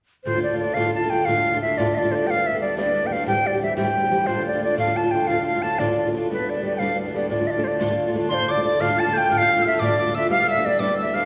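This short excerpt of Celtic folk opens with a wooden flute carrying the melody, its airy, straight tone tongued and up front, over a reedy, breathing pedal harmonium drone sitting low in the background. A fingerpicked twelve-string acoustic guitar joins at 0.3 seconds, its boxy, shimmering, octave-doubled strings close and present as it moves through D minor, Gadd9 and Am7 in D dorian. The tune rolls along in 6/8 at 120 dotted-quarter beats per minute, dark yet lively with a wild edge. At 8.3 seconds the melody begins again as a bright tin whistle adds a high second line, its metallic chiff and vibrato sparkling above the flute. The whole ensemble sits in a reverberant recital hall whose long, wet tail fills the space around the players.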